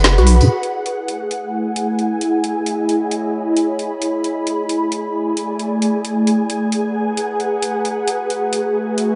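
A deep, wobbling bass sounds up front for only the first 0.5 seconds of this late-night UK garage excerpt before dropping away. Alongside it, a silky string machine holds sustained chords and an ethereal, airy pad spreads a mellow texture, both softened by ensemble chorus and carrying through to 9.2 seconds. The garage drum kit runs until 9.0 seconds with woody snare, metallic hi-hats and tambourine, its layered electronic sound roughened by overdrive and a small room ambience. At a bouncy two-step tempo of 133 BPM with a swung sixteenth-note feel, the harmony settles on a single F#m9 chord. The whole mix is dreamy and soaked in a lush hall reverb, with its top end rolled off to a hazy glow.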